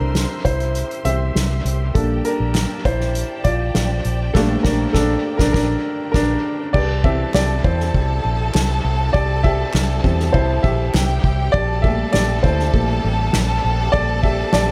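Uplifting piano-driven pop at 100 BPM in C mixolydian, cut from a longer piece: a dark, mellow baby grand holds the spotlight over a round, foam-muted electric bass, soft-mallet drums set distant with dub echo, and lush bowed strings in the background; the band adds an accent from 4.3 seconds, very quiet crisp handclaps join at 2.6 seconds, and an expressive violin section brings a second line from 6.7 seconds, all inside a lightly reverberant, echo-heavy small-room mix.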